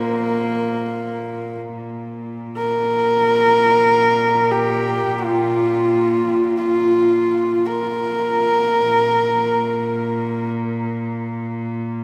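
A horsehead fiddle leads this excerpt of Mongolian folk music, its nasal, husky voice sitting close and up front as one player bows the melody between Bb3 and Bb4, shaded with light vibrato, portamento and an airy bow, and trailed by tape echo. Beneath it, a single cello holds a low Bb2 drone with a reedy, gut-string tone in a period style, lying much further back in the balance. The music moves in free time, tuned to A4 = 438 Hz, and carries a proud, galloping spirit. A vast cathedral reverb with a 4.8-second decay surrounds the playing, giving it an echoing grandeur. The fiddle falls away at 10.5 seconds, leaving the cello's drone to sound alone until 12.0 seconds, where the passage is cut from the longer piece.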